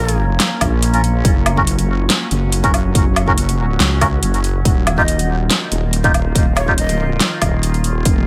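A saturated, detuned wobble bass and a resonant, phaser-washed drone with moving overtones open this brooding, cavernous deep dubstep excerpt at 141 BPM in half-time, joined by a layered drum kit with a huge snare, metallic hats and woodblock, a punchy, tape-warm electronic kick from 0.6 seconds, and reedy, nasal melodica stabs with dub echo, while a bright, airy, bamboo shakuhachi with a tongued chiff sits in the background and returns at 5.0 seconds with an expressive echoed melody over chords moving from Bbm to Gb5 to Ebsus2.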